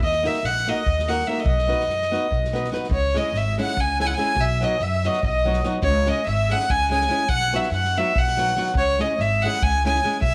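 In a straight 7/8 at 288 BPM counted in eighths, this festive, wild Balkan wedding-band folk piece, cut from a longer performance, puts a rich, pure, floating bowed violin up front, played sul tasto with a soft attack. Beneath it sit a reedy, boxy accordion second line with tape echo in the background, a woody, growly pizzicato upright bass on steel strings, and fingerpicked flamenco guitar with fresh strings entering at 0.2 s. A natural studio-room drum kit of tight kick and medium-tuned snare, played with bundle sticks, sits in the background, the whole mix set in a moderate plate reverb with a faint mains hum, as the chords move from D#m and B into alternating C#m and B.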